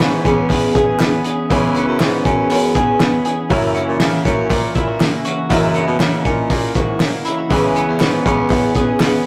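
This wistful, restless slice of jangly indie pop, cut from a longer piece, opens with the full band together in a straight 4/4 groove. The drum kit sits up front, cloth-damped and thuddy with a fat snare, tight kick and hi-hat, its gritty, rolled-off tone adding a lo-fi weight, while a very quiet group handclap adds a crisp, close snap. A fingerpicked twelve-string acoustic guitar fills the middle with a full-bodied, shimmering, octave-doubled ring, and a clean, compressed twelve-string electric guitar spins arpeggios through spring reverb. A punchy baritone saxophone carries the bass line from the background, and a very quiet upright piano adds brilliant, woody touches with audible action noise and a slightly detuned, long-sustaining tone. The harmony moves from C#m7 to F#7 at 3.5 seconds and back to C#m7 at 7.5 seconds, all set in a rough rehearsal-room sound with tube saturation and moderate studio reverb.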